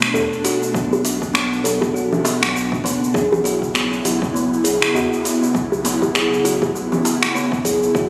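A swung 4/4 groove at 100 BPM drives this hypnotic, meditative organic downtempo excerpt: an overdriven deep house kit of congas, finger snaps, metallic hi-hat and shaker sits up front, joined by a dry, cracking djembe in the background and a deep, layered electronic kick from 0.7 seconds. A woody, hollow kalimba plays mellow, ringing arpeggios through tape echo, over a round, nasal analog bass that pumps with the sidechain beneath an airy, breathy pad with chorus and a slow attack. The chords move from Bm7 to C#m7/B at 3.1 seconds, and the whole piece sounds as if captured on a phone in the room, with lush hall reverb and compression.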